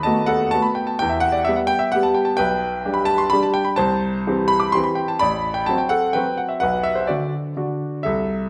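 In a rubato three-beat waltz feel, this sparkling and elegant classical excerpt features a clear, up-front grand piano playing alone across a span from A1 to D6, moving through chords such as B7/D#, Em, C and Bm before the excerpt cuts off at 8.5 seconds, all bathed in a wet recital hall reverb.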